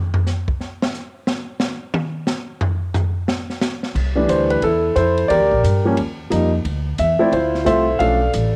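A swinging 4/4 at 178 BPM opens this playful, sophisticated jazz piano trio in C major, with the acoustic drum kit soloing for the first 4 seconds, its dark cymbals, high-tuned snare and boomy kick close and present in a small room. The woody, thumpy pizzicato upright bass on gut strings enters at 3.9 seconds, and the polished grand piano takes the melody at 4.2 seconds, its long sustain carrying a cassette-tape colour. From 4 seconds the harmony moves through C6, Em7b5, Ebadd9, Dm9 and Bm7b5, all in light reverb with the intimate feel of a home cassette recording, cut from a longer piece.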